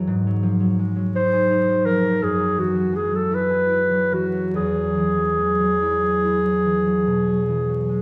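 A wet recital hall reverb surrounds this short passage, heard from further back in the room with vinyl crackle over the sound. The music is a classical, impressionist duo for clarinet and harp, luminous and pastoral in mood, moving in a rubato 12/8. Up front, the concert harp is acoustic and fingerpicked with a ringing tone, spanning its lower and middle register as accompaniment from the start. At 1.2 seconds the clarinet enters as the solo melody voice, warm and classical in style, also up front and sitting slightly above the harp in level. The harmony drifts from G#7 through F#9sus4 to Eadd9, a colorful progression cut from a longer piece.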